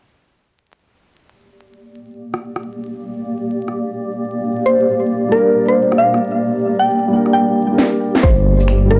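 Wistful and melancholic, this future garage excerpt at 134 BPM in G minor swings its 16ths beneath a cloudy, evolving granular pad that enters at 2.2 seconds, carrying built-in reverb and sidechain pumping, joined by an electronic rim click, cracking snare, shaker and finger snaps in small room ambience. A woody, round FM pluck takes the melody from 4.7 seconds through chorus and analog delay, soon accompanied by a soft, felt-muted upright piano coloured by 12-bit sampler grit, a low-pass filter, tape echo and pumping. After a drum fill, a deep, rumbling detuned saw bass and a tight electronic kick arrive at 8.2 seconds, set in a dry, gritty recording marked by transformer saturation and vinyl crackle.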